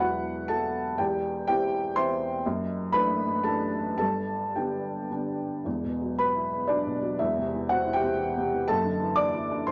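A felt-muted upright piano plays alone from the start, sounding intimate, dark and a little boxy as it sits up front in this short, melancholic passage of neoclassical minimalist piano. Moving in a rubato three-beat feel, it cycles through open, suspended-sounding harmonies from Esus2 through C/E and Dadd9/F# to G, then returns to Esus2 at 5.7 seconds for a reflective second phrase. A moderate studio reverb gives the piano a modest sense of space, while the rolled-off top end keeps the sound soft and hushed until the cut at 9.7 seconds.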